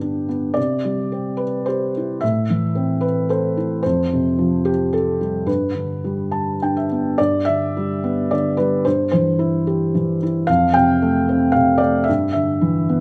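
Relaxed and warm, this lyrical classical fragment from a longer piece features a solo felt-muted upright piano, soft, dark and intimate with audible action noise, moving at 110 BPM in a rubato 3/4 through gentle chords from G and Cadd9 to a closing G6, with a brief fill at 6.0 seconds leading into a second section at 7.2 seconds, all captured up close and in detail with light reverb.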